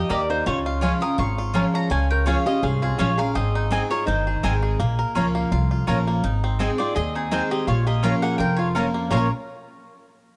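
This driving, rustic bluegrass excerpt opens with nearly every part sounding together, a bright, twangy banjo carrying the melody with a percussive, fingerpicked attack while a woody, double-strung mandolin shares the lead line. A mellow lap resonator guitar adds a metallic, nasal slide counter-line, and a second mandolin, brighter in tone, punches in with stabs from 0.1 seconds. Underneath, a full-bodied dreadnought acoustic guitar picks out the accompaniment with audible finger squeak, and a thumpy, dark upright bass sits up front with its plucked steel strings. The swung feel and the chords moving between Db, Ab and Bbm keep the rhythm rolling forward. The lead mandolin and the resonator guitar drop out at 4.6 seconds and return together at 6.8 seconds, leaving banjo, guitar, bass and the stabbing mandolin to carry the gap. A light reverb gives the ensemble a modest sense of room.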